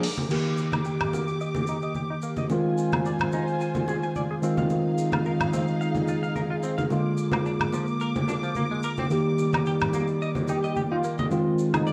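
A tine electric piano, lush with chorus and tape echo, opens this short nu-disco cut in Eb major at 109 BPM, set over dark, bowed chamber strings and a gritty, overdriven sampler-style drum kit with crash, hi-hat and woodblock, while ringing congas and maracas sound distant in a large room. From 0.7 seconds a bright, twangy clean electric guitar picks a riff through chorus and a filter sweep, moving across Ebmaj7, Ab6, Fm7 and Bb7 with a lightly swung, sunny groove. A thick, warbling detuned unison lead arrives at 10.5 seconds with analog delay, all of it colored by cassette tape and a moderate room reverb.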